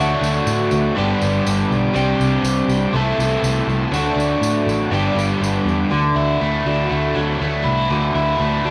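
Reflective and dusty, this short folk rock and heartland rock fragment, cut from a longer piece, moves at 121 BPM in a straight 4/4. An overdriven, double-tracked electric guitar sits up front with a bright, scooped riff. Beneath it, a plugged-in twelve-string acoustic guitar shimmers in octave-doubled picking, its boxy parlour tone catching the odd finger squeak. A fingered electric bass adds a dark, round, foam-muted low end, while a tonewheel organ holds very quiet sustained chords, full and shouting with light overdrive through a stopped rotary speaker. A close, jingly tambourine rides along until 5.7 seconds, just before the passage turns at 5.9 seconds from a cycling D, G, Csus2 and Am/C progression onto a Dadd9. Light reverb and small room ambience give it a homespun cassette character.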